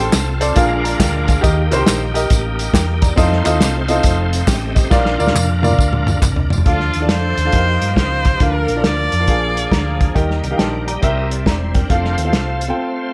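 A close, lightly reverberant mix opens this short, jubilant uptempo gospel cut in Bb major at 138 BPM, swung in 4/4, where a clear, up-front concert grand piano comps over a shouting tonewheel organ with fast rotary speaker, light overdrive and chorus vibrato, a round, punchy hollow-body electric bass and a dark, tight soul drum kit. Group handclaps, tambourine and egg shaker add dry percussion until 6.6 s, as a drum fill draws to a close, and a rich, focused bowed viola then takes the melody with vibrato from 6.7 s to 10.0 s. A brief grand piano fill overlaps the viola's closing phrase before the soulful progression resolves to F and the band breaks at 12.8 s.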